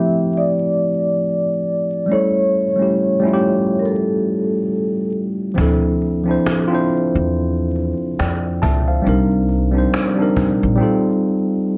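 This cosy, nostalgic lo-fi hip hop fragment opens with a mellow vibraphone melody, played with soft mallets and a medium motor vibrato, ringing up front through a plate reverb over a worn, slightly out-of-tune tine electric piano carrying the chords through a cassette tape sheen. The vibraphone drops out at 5.1 seconds, and at 5.6 seconds a woody, growly pizzicato upright bass and a snappy cajon with snares enter together, giving the slow, swung groove a thumpy low end and a live-room snap. The electric piano stays clean, direct and close throughout, moving from Fmaj7 and A7 into Dm7, Cm7 and finally F7. Vinyl crackle and a moderate studio reverb frame the whole piece, which breaks off at 11.8 seconds as part of a longer work.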